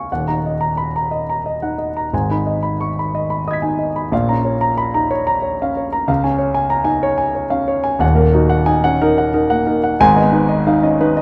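Neoclassical minimalist piano in 6/8, moving at 60 BPM by dotted quarters with a rubato feel, hopeful and tender in mood, played by a single dark grand piano that spans D#1 to B6 for the full 11.2 seconds of this brief portion of a longer piece. The piano sits up front with a mellow, intimate, vintage tone, short sustain and audible action noise, set in a moderate, lush hall reverb within a rough home-demo mix. The harmony moves through D#m, G#m, A#m and C# before settling back on D#m and G#m.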